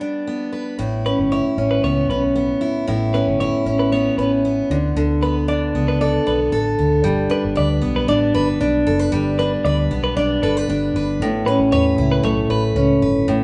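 Recorded as a band playing live in one large studio room, this excerpt has a moderate reverb and a soft, rolled-off top end. It is easy-going, carefree acoustic pop at 115 BPM in 4/4, led by a full-bodied, picked steel-string acoustic guitar set up front and moving between G and Aadd9 chords. A dark, round, punchy muted bass enters at 0.8 s, and a clean, twangy, compressed twelve-string electric guitar adds high arpeggios from 1.1 s.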